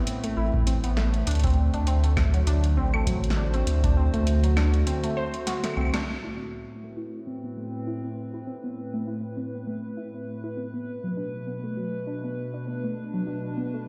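A round, up-front sine sub bass anchors this melancholic, cerebral IDM fragment at 100 BPM in 4/4, with a gentle 16th-note swing, holding the low end until 5.9 seconds. Around it, an electronic kick with a deep thump and an analog drum machine of punchy snare, metallic hi-hats and claves sound as though re-recorded in a large room, the machine's hits trailing digital delay echoes before a drum fill and a band accent close the opening half. A hollow, flute-like pad built from detuned square, triangle and sine tones sustains chords over Amadd9, D7 and Bm7, blurred by chorus and a grainy vintage sampler grit. Above it a warbling, lo-fi sawtooth pluck spins decaying arpeggios through chorus and digital delay, and from 6.1 seconds a filter sweep moves across it as the second half unfolds over the sustained pad. The whole piece sits in a bare, reverberant space, like a big sound system playing in an empty studio.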